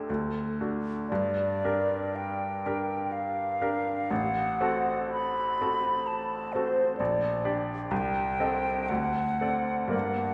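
Heard through a wet scoring-stage reverb from further back in the room, this melancholic, elegiac romantic classical excerpt in G minor moves at 61 BPM in a rubato 3/4. A hollow, pure, close-miked concert flute sings the melody with vibrato and tongued notes over a bright, brilliant, intimate grand piano accompaniment that sits up front with audible action noise. The harmony passes from D through G minor to a closing D7.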